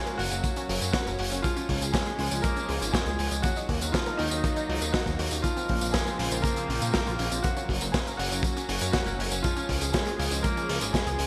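A bright grand piano opens this short cut from a longer italo disco piece, its brilliant, intimate melody carrying a touch of delay and the faint sound of its action, while a lush, thick unison pad holds chorused chords and a warbly, lo-fi pluck spins detuned arpeggios in the background. At a straight 120 BPM in 4/4, a crunchy breakbeat kit joins almost at once, with hi-hat, a medium-tuned snare and tambourine sitting up front in gated reverb, saturated and gritty with a rolled-off top. A chorused synth bass follows at 0.2 seconds, glossy and mellow with a retro pulse-wave and sawtooth character, and a punchy, dark kick drum arrives at 0.4 seconds. The harmony moves through Gb, Db, Ebm and Bbmadd9 before returning to Gb and Db, giving the passage a nostalgic, bittersweet mood. A moderate hall reverb and bright 1980s-style digital production frame the whole arrangement.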